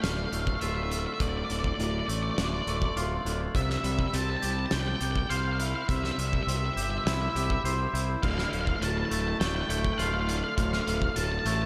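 Melancholic and cathartic, this post-rock build-up at 102 BPM in D minor moves from Dm to C at 3.5 seconds and back to Dm at 8.2 seconds, with a dark octave-fuzz lead guitar carrying the melody through distortion and delay, a twangy clean electric guitar playing fingered arpeggios with delay, a punchy overdriven fuzz bass up front, and a loose indie drum kit with a fat snare, dark cymbals and a pumping room sound, all soaked in a lush hall reverb that gives the cut-out passage a dreamy haze.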